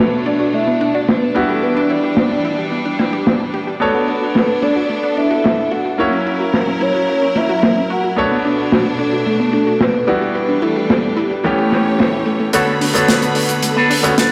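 Sensual and groovy, this nu-disco cut in B minor at 110 BPM sets a round, octave-layered synth lead with chorus, tremolo, cassette-tape color and delay over a brilliant grand piano with sampler grit, distant bowed strings with biting vibrato, a punchy detuned unison pluck playing arpeggios in the background, and a tight, dry funk kit of hi-hat and medium-tuned snare, inside a stone-room plate reverb, until at 12.5 s a twangy, envelope-filtered electric guitar riff enters for a build-up as a filter sweeps the arpeggio.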